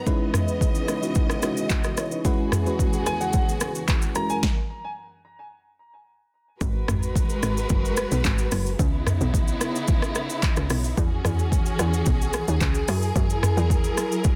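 Amapiano at 110 BPM in G# minor, late-night and deep, with a punchy, up-front deep house drum kit of kick, snare, claps, rim click, shaker, toms and smooth hats under bowed studio strings that hold expressive, vibrato-laden chords with a sidechain pump. A soft, round, warbling FM electric piano with chorus accompanies the opening over C#m9, E69 and F#9 changes, while a clear, intimate grand piano with tape echo and audible action noise adds a short high melody at 3.1 seconds. After a stop at 4.4 seconds, the drop arrives at 6.6 seconds as a tight, percussive log drum bass takes the low end in a dense, heavily limited, dry mix.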